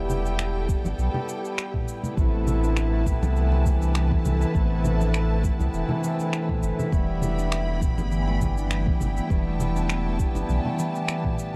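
A lightly swung groove of deep electronic kick, finger snaps, shaker and toms, with soft-handed congas tucked in the background, carries this earthy organic downtempo piece, where a round sine sub bass sits up front beneath a reedy, breathing harmonium roughened by vintage sampler grit and tape echo and a lush, bowed string section, all three with sidechain pumping, while a ringing fingerpicked harp joins at 2.2 s with its own tape echo, set in a dark small-room ambience.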